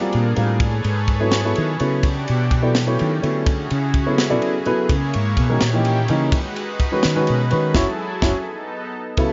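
Funky and slick, this brief electric jazz fusion passage in 6/8 at 84 BPM, cut from a longer piece, features a round, dark fretless electric bass soloing up front with lush chorus over a dark grand piano with audible action noise, a thick, detuned unison pad with slow attack and chorus, and a crisp, punchy fusion kit with high-tuned snare and ride, moving through rich chords from Amaj9 and Dmaj9#11 to G#m7 before a band accent at 7.8 seconds and a drum fill at 8.5 seconds, all in a dry, close sound.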